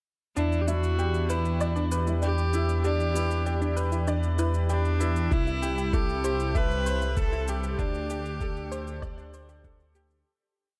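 At 0.4 s a hypnotic, melancholic piano-and-strings electronica piece builds all at once: a clear, close viola sings arching motif phrases with light vibrato and an airy bow through a low-pass filter, while a bright, woody upright piano with audible action noise repeats a 16-step arpeggiated riff with tape echo. Beneath them a rumbling detuned saw bass holds sustained roots with sidechain pumping, a nasal analog pluck loops a 12-step pattern that drifts against the bar from the background, treated with chorus, phaser, tape echo and pumping, and high-pass-filtered electronic shaker and low toms keep a restrained pulse. A muffled, thumpy four-on-the-floor kick arrives up front at 5.3 s before the whole piece fades out from 7.0 s inside a dark production with light reverb and digital ambience.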